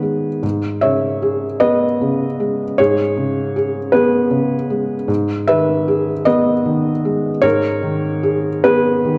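Melancholic and intimate, this brief fragment of neoclassical minimalist piano drifts in rubato 6/8 at 51 BPM in G# minor, tuned to A4 = 436 Hz, as a solo felt-muted upright piano, mellow and up front with audible action noise, moves from E6/G# to G#m over its 9.2 seconds inside a moderate concert hall reverb and a dark, warm production.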